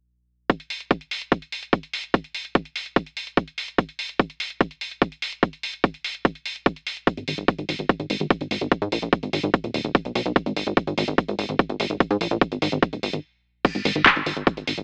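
A straight 4/4 pulse drives this hypnotic, intense psychedelic trance fragment. A tight, overdriven electronic kick and a layered techno kit of crash cymbal, handclaps and hi-hat sit up front from 0.5 s, joined at 7.2 s by a punchy, detuned, wave-folded analog bass with a plucky filter snap and mellow decay. The dry, AM-radio-toned mix halts briefly at 13.2 s before a new section begins, cut from a longer piece.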